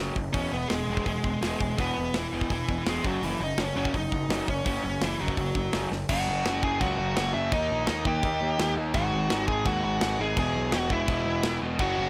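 Punk rock at 168 BPM in a straight 4/4, aggressive and urgent, with a dark, raw garage guitar and a picked, overdriven electric guitar grinding out riffs in the background over a bright, growly fuzz bass and an up-front, tight metal drum kit with a medium-tuned snare and tight kick. A bluesy lead guitar with a warm distorted tone sits at the front carrying the melody over chords moving through F#5, E, D# and G#5, and a drum fill at 5.9 s marks the shift into the second section. At 11.8 s a bright, double-tracked distorted guitar briefly joins the riff in this dry cut from a longer piece.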